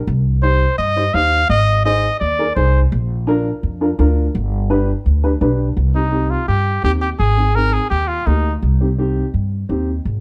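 Cumbia in C minor at 168 BPM, a passionate, fiery excerpt cut from a longer piece, driven by a thumpy, woody pizzicato upright bass up front and a mellow, boxy upright piano accompanying beneath, while a solo pop-style trumpet with light vibrato sings up front from 0.4 to 2.8 seconds and returns at 6.0 seconds, over changes that move through Cm, Ab, Bb and G before turning to Cm, Ab, Eb and Cm, in a dark production with light reverb.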